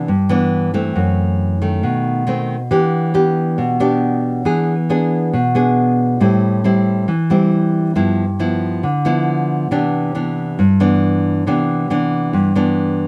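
Bossa nova in a relaxed, breezy mood, this short excerpt from a longer piece features a solo nylon-string guitar, fingerpicked with a classical touch and sitting up front in the mix. Its acoustic, warm tone moves through rich jazz harmony, opening on Cmaj9, passing through F#m7b5, B7b9 and Em7, and returning to Cmaj9 by 9.7 seconds. A moderate studio reverb lends the guitar a gentle sense of space.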